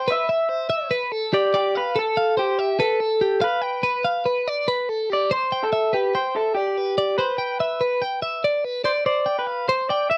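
A twangy, slightly broken-up electric guitar from a small old amp carries the melody, its picked lines tinged with slapback echo, while a clean, compressed twelve-string electric guitar sits up front beside it with picked arpeggios throughout. This bright, wistful rock passage in 9/8 moves through Cmaj7, Dm7 and G7, then returns to Cmaj7 at 5.3 s before settling on G7sus4 at 9.1 s. The sound is dry and close, with light reverb, in the manner of a 1970s studio recording, and the passage is cut from a longer piece.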